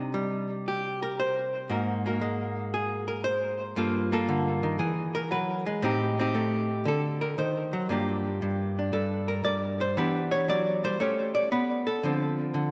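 Swung eighths at 116 BPM in 4/4 give this moody solo jazz fragment in G minor its swinging feel, as a lone archtop guitar plays from 0.0 to 12.7 seconds across a range from G2 to D5. The hollow-body electric tone is dark, clean and picked, sitting up front with a subtle chorus and a diffuse ambient delay, and its chords move through shapes such as Cmadd9, Ab9 and Gm9 before a D7 leads into a repeat of the opening section at 7.9 seconds. A lush hall reverb with a 2.1-second tail soaks the whole mix, lending it a dreamy quality.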